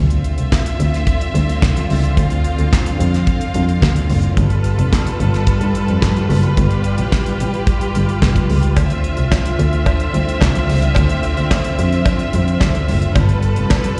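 Lush bowed strings holding Dm9 and G9 chords and an expressive bowed double bass with vibrato and portamento open this driving, danceable disco passage in D dorian at 109 BPM, joined almost at once by a dry, damped 70s kit with a fat snare, tight kick, hi-hat and handclaps, while very quiet ringing congas enter at 1.2 seconds and a metallic cowbell with slapback echo arrives at 8.8 seconds, all heard as a live gig through the venue's PA in a recital hall's light reverb.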